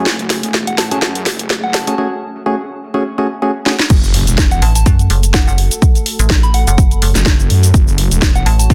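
Bass house at 125 BPM in F# minor, swaggering and aggressive, this excerpt opens with a hollow, percussive organ stab and a heavy, detuned wobble bass over an overdriven house kit with cracking snare and bright hats, a soft FM bell melody entering at 0.7 seconds and a deep, moody pad pumping in the background, until the drop at 3.9 seconds brings a punchy electronic kick, a barely audible impact and, from 4.6 seconds, an up-front metallic FM bass, all in a dense, heavily limited mix with light digital ambience.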